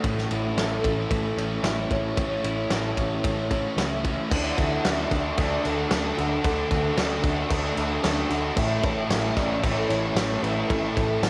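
A dreamy, blissful shoegaze and dream-pop rock passage at 113 BPM in D major opens on a loose, up-front indie drum kit with a fat snare and dark cymbals, a round, foam-muted bass, a dark overdriven garage guitar with reverse reverb, and a thick fuzz guitar thickened by chorus, all under a very quiet vintage string-machine viola pad. At 0.6 seconds a velvety, detuned synth lead slides in from the background with chorus and tape echo, and at 4.3 seconds a bright, double-tracked crunchy guitar riff joins very quietly as the harmony moves from A to D and back to A. The whole cut has the saturated, rolled-off sound of a small-room home recording on cassette, taken from a longer piece.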